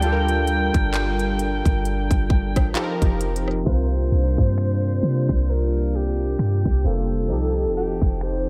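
A dreamy, reverb-soaked, low-passed mix frames this 66 BPM excerpt of longing, sensual contemporary R&B with a swung 16th feel, where a breathy, whispered alto saxophone with vibrato, scooped notes and delay sings a jazz-style solo over round, detuned sawtooth keys with chorus, a smooth, mellow ring-modulated pad, a deep, boomy sine 808 bass, and an up-front trap kit of hard-clipped kick, crisp hats, snaps, claps and rim clicks, moving through Gm7 and F9sus4 to C7sus4 and F9 as a filter sweep runs from 3.7 s.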